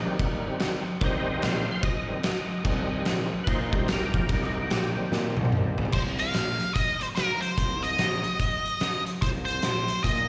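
Heavy and brooding, this short cut of swung blues rock with a southern rock edge moves at 146 BPM in C minor, opening on a thick, overdriven tonewheel organ solo of sustained chords through a slow rotary speaker with chorus vibrato and key click. Growly fuzz picked bass and an oversized low-tuned drum kit with a fat snare and punchy kick sit beneath, the drums playing a fill from 5.1 to 5.9 seconds. At 5.9 seconds the organ drops out and an up-front octave-fuzz lead guitar takes the melody with wah, distortion and slapback echo, all heard as a live gig through the venue's PA with recital hall reverb.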